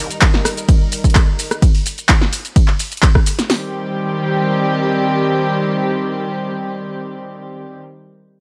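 A dark, reedy bowed string section with a gut-string tone and light vibrato opens this raw, gritty acid house excerpt on sustained sidechain-pumped chords, as two overdriven, punchy analog drum machines join almost at once, one with claps, hi-hat, ride, rim clicks, shaker and a snare set in a short room, the other with a hard-hitting kick, hi-hat and snare, until both stop by 3.6 seconds and the strings sustain alone until 7.8 seconds in a dry hardware recording touched by light digital reverb.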